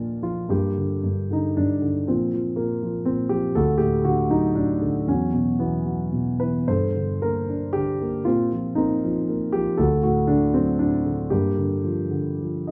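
Bittersweet and moody, this classical solo piano passage in G minor moves in a rubato 3/4 at roughly 103-124 BPM, its mellow, vintage-toned concert grand sitting up front with deep bass and short sustain as it drifts through suspended and added-note chords toward a closing Gm7 at 11.3 seconds, all wrapped in a moderate recital-hall reverb.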